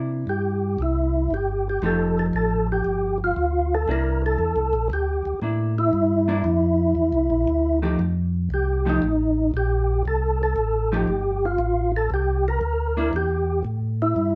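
Greasy and bluesy, this soul jazz organ trio cut swings at 117 BPM in 4/4, with a swing feel on the eighth notes and a C mixolydian flavour. A mellow tonewheel organ carries the bass line in a round, dark register, its clean tone marked by key click and turned through a slow rotary speaker. Starting at 0.3 seconds, a percussive tonewheel organ takes the melody up front, its second-harmonic percussion, chorus vibrato and fast rotary speaker giving each mellow note a percussive pop and shimmer. A vintage hollow-body jazz guitar supplies picked, clean accompaniment with a dark electric tone, sitting lower in the mix and stopping at 13.1 seconds. The harmony moves between C9 and F9 throughout, and the band sounds like it is playing live together in one room with a moderate studio reverb, as this excerpt is cut from a longer piece.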